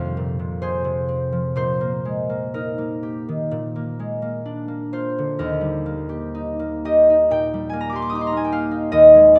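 A ringing, up-front concert harp sounds through a moderate recital hall reverb, giving this short excerpt an intimate yet spacious classical feel. The piece is a solo harp work in E-flat major and 4/4, played with a rubato feel at a tempo that moves between 56 and 75 BPM. The fingerpicked harp covers a broad span from Eb2 up to Eb6, its acoustic tone warm and resonant. The harmony moves from F minor through Eb over Bb and Bb before settling on Eb at 5.4 seconds, where a second section begins and continues until the cut at 9.4 seconds. The mood is serene and dreamy throughout.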